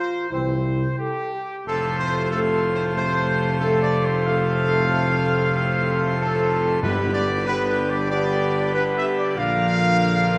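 A wet scoring-stage reverb surrounds this majestic, triumphant classical brass-and-organ passage, cut from a longer piece and moving at 93 BPM in a straight 4/4. Up front, a warm trumpet section carries the melody with light vibrato and a smooth top, while a mellow, close-miked French horn section holds sustained chords in the background. A dark trombone section, distant and tight, adds further sustained chords beneath them, and a dark solo tuba anchors the bass from 0.3 seconds. At 1.7 seconds a brilliant full pipe organ enters up front, its mixtures and romantic voicing broadening the harmony as the chords move from C to F, then to G and Bb. Timpani struck with hard mallets make a brief, articulate, close and dry appearance on G2 from 6.8 to 7.8 seconds.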